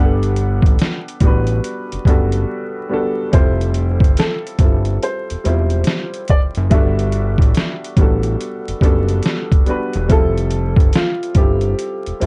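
A dark, lightly reverberant lo-fi hip hop recording laced with vinyl crackle, this short cut from a longer piece feels cosy and nostalgic at 71 BPM in 4/4, with a loose swing on the sixteenths. A felt-muted upright piano carries the melody, its soft, intimate tone softened by a low-pass filter and trailed by tape echo, with the noise of its action audible beneath each short-lived note. A second upright piano, worn, woody and slightly out of tune, plays the accompaniment through its own low-pass filter, moving between Gmaj9 and Fmaj9. Up front, a fat, saturated analog bass blends sawtooth and square-wave tones with a quick filter pluck and sustained low notes, while a compressed, pitched-down, muffled sampler-style drum kit enters at 0.2 seconds with a thumpy kick, medium-tuned snare and hi-hat. A brief break at 2.5 seconds interrupts the groove before it resumes at 3.3 seconds.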